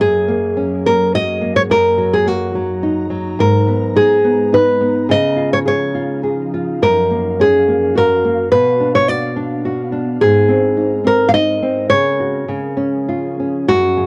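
Sleepy and tender, this short cut from a longer children's lullaby in F# major drifts at 106 BPM in a rubato 3/4, with a fingerpicked nylon-string guitar carrying a full-bodied, classical melody up front, complete with audible finger squeak. A second nylon-string guitar, dark and woody on old strings, thumb-plucks the accompaniment through a cassette tape haze, while an ethereal, detuned pad with slow attack and ensemble chorus sustains mellow chords in the background. The harmony moves from F#add9 through a Bm at 8.5 seconds to a C#sus4 that resolves to C# at 12.5 seconds, all set in a snug booth ambience of a home cassette recording.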